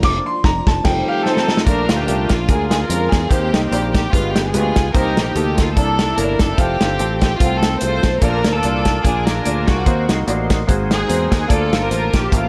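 Uptempo gospel in Bb major at 146 BPM with a lightly swung 4/4 feel, this uplifting, hopeful excerpt opens on a clear, woody upright piano solo and a band accent, with a drum fill at 1.3 seconds leading into the main section, where a floating, pure string section carries the melody from 1.1 seconds over a rich progression that moves through G7b9, C13 and Ebm6 before settling on Bbmaj7. The soul drum kit sits up front with a tight kick, medium-tuned snare, hi-hat and crash, while a growly, round fingered electric bass anchors the low end and the piano keeps up accompaniment throughout. A tonewheel organ with fast rotary speaker, key click and chorus vibrato holds sustained chords in the background at the start and returns at 8.2 seconds, all within a light reverb.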